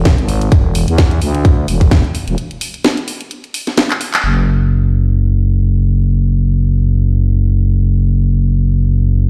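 A thick, growling FM bass with sidechain pumping drives this aggressive, swaggering bass house excerpt with a swung sixteenth feel, joined up front by a tight electronic kick that stops at 2.0 seconds and a layered garage kit of handclaps, hi-hat and cracking snare that breaks down, fills and accents before dropping out at 4.2 seconds, leaving the bass alone until 9.3 seconds, all ringing through a big sound system in a bare stone room.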